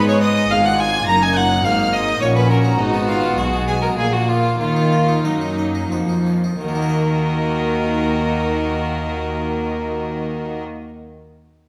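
Baroque-style classical concerto movement in Eb minor and 3/4, stormy and dramatic at 85-106 BPM, where an up-front solo violin sings a smooth, even melody over a high, distant violin section, an expressive second violin line, a focused viola section, a bright, dry harpsichord, lush cellos and clear double basses, the strings all bowed with vibrato in a reverberant recital hall, easing into a slowdown from 1.9 to 6.6 seconds before a new section begins, in a short cut from a longer piece.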